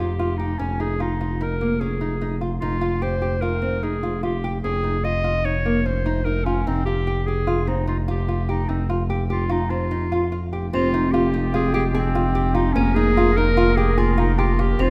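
A moderate scoring-stage reverb gives space to this pensive, hypnotic chamber piece in F minor, moving at 148 BPM in a straight 5/4, cut from a longer work. A clear, smooth-topped clarinet sings the melody up front over fingerpicked nylon-string guitar arpeggios and a nasal synth bass holding F1 with vibrato, while the harmony circles between Fsus2 and Eb7sus4/F. At 10.7 seconds a mellow, vintage woodwind section adds soft sustained chords in the background, and from 10.8 seconds a metallic, ringing vibraphone struck with hard mallets traces a second line in the background.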